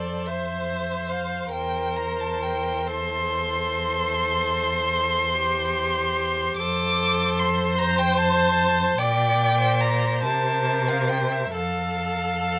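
Classical chamber music: a slow, romantic movement for string quartet in 12/8, taken from a longer work and shaped with flexible rubato. The mood is lyrical and warm. A rich, focused first violin carries the melody close and up front, its vibrato singing high in its range, while a second violin, clear and more distant, holds a lower line beneath it. The viola supplies smooth, even accompaniment with a clear tone and vibrato, and a warm cello anchors the bass from further back, its playing expressive with vibrato and portamento. All four bowed players sound together throughout the 12.6 seconds, set in light reverb.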